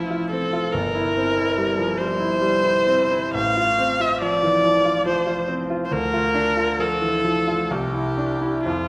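A rich solo viola carries the melody from the first moment, its bowed line sung up close with expressive vibrato and portamento between E4 and F5. This is a warm, lyrical romantic duo in F major, moving in 3/4 at 61 to 72 BPM with a flexible, rubato feel, tuned to A4 = 436 Hz. A bright concert grand piano accompanies throughout, reaching from a deep bass at G1 up to F4 with a brilliant, natural tone, also placed up front. The harmony passes through F/A, C7/G, Bb/D and arrives at Cadd9 at 7.7 seconds. A recital hall reverb of 1.6 seconds surrounds the duo in this short passage cut from a longer piece.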